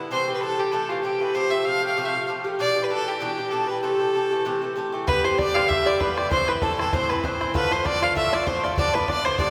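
A rich, smooth fiddle with light vibrato leads this wild, dark and lively Celtic reel in A minor at 194 BPM with a gentle swing, over the metallic double-string picking of an up-front Irish bouzouki, while an airy wooden whistle with a crisp, chiffy attack sits in the background, and at 5.1 s a twangy, fingerpicked bluegrass banjo and a boomy, open bodhran join, the whole cut resting in the long, wet reverb of a church.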